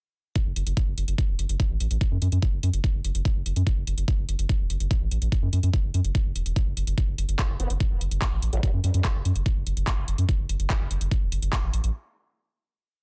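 An alien, psychedelic trance cut from a longer piece, driving along at 145 BPM in F# minor, with an up-front knocking electronic kick and a drum kit of handclaps and metallic hi-hats both entering at 0.4 seconds, a round, deep, dark analog bass holding the low end from 0.5 seconds, a nasal, wobbling vowel-sweep bass surfacing briefly from 7.6 seconds under chorus, sidechain pumping, high-pass filtering and digital delay, and a dry, dense, heavily limited mix that gives way to a break at 11.9 seconds.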